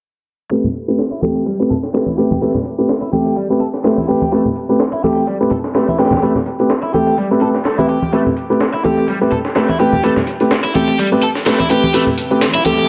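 From 0.5 s a raw, energetic breakbeat groove in A minor kicks in at 126 BPM, swung sixteenths giving the 4/4 pulse a loose push while an Am9 chord colours the whole passage. A dark, mellow grand piano sits up front with boxy, short-sustained stabs, its action noise audible, shaped by a low-pass filter and dub echo. Beside it, a bright, overdriven electric guitar plays a picked, double-tracked riff with tube saturation and vintage 12-bit sampler grit, also low-pass filtered and echoed. Both guitar and piano ride a filter sweep that runs the length of this short section cut from a longer piece. The compressed, sampler-style kit, re-recorded in a small room, brings a thumpy kick and a high-tuned snare under gritty hi-hats. Low-tuned, ringing congas struck with hard hands, a layered electronic tambourine in the background, and a riser arriving at 12.3 s fill out a mix wrapped in lush hall reverb.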